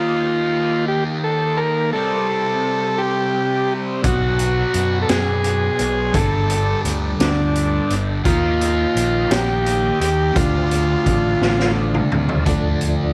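A buzzy, up-front combo organ carries the melody through tape echo with a light vibrato, floating over a dark, trippy psychedelic rock groove in 6/8 at 57 BPM counted in dotted quarters. A bright, double-tracked fuzz guitar plays a distorted riff run through a phaser from the start, while a very quiet tonewheel organ holds sustained chords with key click and a slow rotary shimmer beneath. At 4.0 seconds a round, amped fingered bass and a raw garage drum kit enter, the drums sounding saturated and gritty with a boomy kick and a rolled-off top in a small room. The harmony moves from Eb and C through Bmadd9, Gsus2 and Dm7 before settling on Dm, and a drum fill at 11.4 seconds closes the section as the organ melody comes to an end. A light studio reverb frames this short excerpt, cut from a longer piece.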